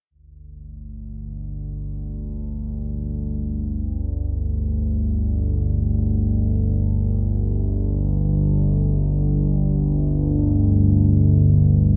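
An up-front analog synth drone, nasal and evolving with a sawtooth and pulse-wave tone, pulse-width modulation and chorus, enters at 0.7 seconds and sustains low between G1 and D2 on a G5 chord. It fades in over the whole 12-second span, with its slow attack and long release melting into a cavernous cathedral reverb. The ambient, free-time piece feels desolate, and its worn cassette-tape sound adds a warbly pitch drift to this fragment of a longer work.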